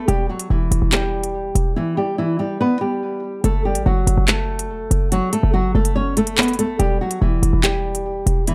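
Dark, ominous drill hip hop in F# phrygian at 143 BPM with a half-time feel, this excerpt features a fingerpicked acoustic flamenco guitar melody with audible finger squeak and tape echo over a punchy, tight sine-based 808-style bass with a noise layer and an electronic drill kit of crisp hats and handclaps that enters at 0.1 s, all moving through Em, F#m and back to Em at 6.8 s within a dark digital ambience.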